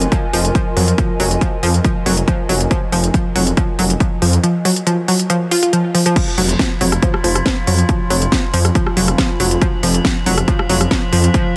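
A straight 4/4 pulse at 139 BPM drives this intense, hypnotic slice of peak-time techno in F phrygian, built on an overdriven electronic kick, a techno kit with a cracking snare, smooth pumping hats, crashes and rim clicks, and a thick, menacing detuned saw bass that pumps up front on an F minor chord. Over it, an analog pluck riff plays with a bright, round, wave-folded bite, roughened by 12-bit sampler grit, chorus and tape echo, while a warbling, nostalgic lo-fi pad hovers dark in the background until 6.2 seconds. At the drop, an eerie, metallic inharmonic drone enters at 6.5 seconds with phaser and chorus, and the whole mix carries a heavily compressed, radio-like sound with light reverb.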